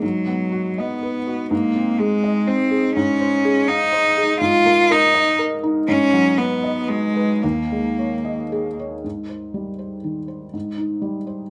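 Close and intimate in a moderate studio reverb, this excerpt of neoclassical piano and strings in Ab major moves in a rubato 3/4 at 107-127 BPM with a hopeful, tender mood. A felt-muted upright piano sits up front with a soft, mellow accompaniment across the whole 11.5 seconds. A single bowed cello carries a rich, focused second line with vibrato until it stops at 8.8 seconds, leaving the piano alone as the harmony settles on Abmaj7.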